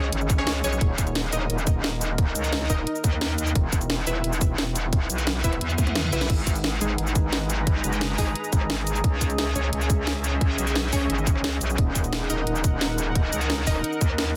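A straight 4/4 drum and bass groove at 175 BPM drives this tense, futuristic slice of dark technical drum and bass, with an overdriven electronic kick up front from 0.3 seconds alongside a layered kit of cracking snare, bright hats, rim clicks, shaker, toms and crash. A metallic, aggressive wobble bass with chorus and sidechain pumping sits low and saturated beneath bold, orchestra-hit-like synth stabs that carry reverb and delay, while a deep, moody ambient pad hangs in the background. A reverse cymbal and drum fill at 5.8 seconds lead into a sweeping, full-bodied resonant pad holding sustained chords, moving through G#m, C#m and D#m under a dense, heavily limited master.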